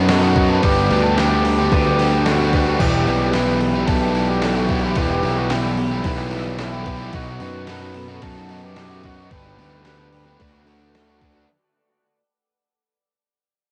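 A gated 80s digital drum machine drives a straight 4/4 pulse, its thumpy kick and gated-reverb snare overdriven alongside hi-hat and crash, setting a hazy, melancholic shoegaze and dream pop mood in this fragment cut from a longer piece. Up front, a fuzz-soaked picked electric bass carries a round, overdriven low end, while a compressed overdriven electric guitar plays a riff through reverse reverb, shadowed by a very quiet crunchy overdriven guitar and a bright, double-tracked tight distorted guitar. In the background, a twangy twelve-string electric guitar picks clean arpeggios with subtle chorus and analog delay. A distant, roomy cor anglais sings a dark classical-style melody with light vibrato, coloured by cassette tape and analog delay, from 0.1 to 10.9 seconds. Beneath it all, a very quiet, deep, detuned sawtooth pad sustains moody chords over a progression moving through B, Gadd9, Em and D, and the whole passage fades out within a lightly reverberant home cassette recording.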